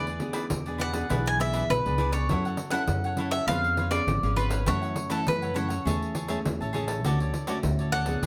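A picked bowl-back mandolin with doubled strings sits up front carrying the melody through this lively, playful samba and choro fragment at 101 BPM, backed by a bright, crisp cavaquinho, a full-bodied fingerpicked nylon-string guitar with audible finger squeak, a woody pizzicato upright bass, and a jingly, compressed, saturated pandeiro entering at 0.1 seconds, all in light reverb over chords moving from E7 through F#m7 and C#7/E# to Amaj7/E and Dmaj7.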